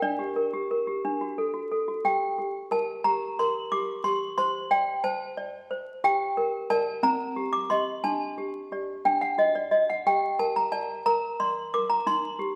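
A lilting 6/8 pulse at 60 BPM, counted in dotted quarters with a straight feel, carries this fragile, eerie classical lullaby in G minor. A solo toy piano plays throughout the 12.6 seconds, ranging from C4 to D6, its clanky, bell-like tone bright and slightly out of tune, with the plastic hammers clearly audible. Close-miked and up front, the instrument sounds full and dry at its source, yet it sits in a recital hall reverb with a 1.6-second decay, while vinyl crackle adds a faded, uneasy patina. The harmony moves from Gm/D through D, Gm, D5/G, Cm and Dsus4 before resolving back to Gm, and the phrase begins again at 2.0 seconds. The passage is cut from a longer piece and stops on a Cm/Eb chord at 12.1 seconds.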